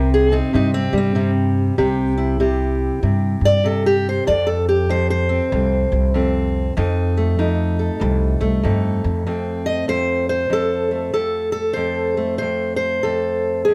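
A bright, up-front fingerpicked steel-string acoustic guitar carries the melody over a woody, growly pizzicato upright bass in this swaggering, gritty acoustic country blues with a swung feel, moving from C to F7 before the bass drops out at 9.2 seconds and the guitar settles on F alone, all in a dark production with light reverb.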